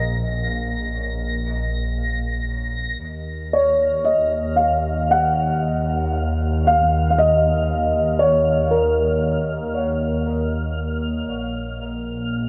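A melancholic, spacious ambient excerpt at 58 BPM opens on a mellow, intimate felt-muted upright piano melody with diffuse ambient delay over a veiled, bowed double bass section played close and up front, while a detuned sawtooth analog drone with chorus and a sparkling granular FM texture with octave-up shimmer fade in from 3.0 seconds as the harmony settles on Ebsus2, the piano falling away at 9.7 seconds before a Bb5 chord at 11.3 seconds, all bathed in a huge, wet reverb and cassette-tape character.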